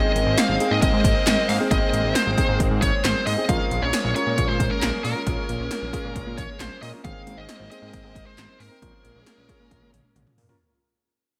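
Driving and cool, this synth-pop excerpt fades out from its opening and sets a distorted, high-gain lead guitar with digital delay over a fat, detuned analog bass, a lush chorused unison pad, a background concert grand with audible action noise, and up-front 80s electronic drums with gated snare and toms, metallic hats and overdrive, while a very quiet, warbly lo-fi pluck adds arpeggios from 3.5 s and a drum fill arrives at 9.7 s, within a bright 1980s-style digital production and moderate hall reverb.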